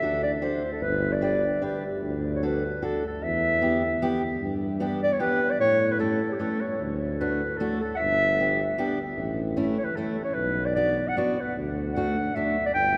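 A distant, roomy clarinet carries the melody up front in this bouncy, festive alpine dance-band excerpt in swinging triple time, over a smooth-topped tuba bass with light vibrato and a full-bodied fingerpicked steel-string acoustic guitar whose finger squeaks are audible before it drops out at 12.6 seconds, all bathed in the long, wet reverb of a church or concert hall.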